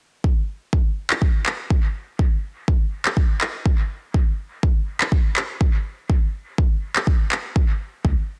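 A dry, dense and heavily limited mix opens this hazy, meditative dub techno fragment, cut from a longer piece and moving at 123 BPM in 4/4 with a light 16th-note swing. An up-front, layered electronic kick with a deep, small-room character drives it from 0.2 seconds, joined at 1.1 seconds by tape-toned analog handclaps trailing dub echo. Only near the close, at 8.0 seconds, does a round, sine-like sub bass on C#2 appear briefly, its fast attack and sustain colored by tube saturation and sidechain pumping.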